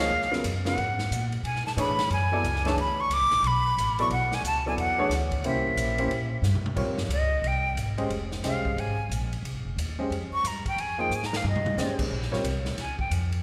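Bathed in the wet reverb of a concert hall, this intense, spiritual modal jazz excerpt swings at 180 BPM in 4/4, with a breathy, bright flute carrying the melody up front with vibrato, a clear, slightly detuned upright piano in accompaniment, a woody pizzicato upright bass, and an airy big-band drum kit with dark cymbals and a punchy kick whose fill at 6.4 s leads into the flute solo and the move to F minor at 6.8 s.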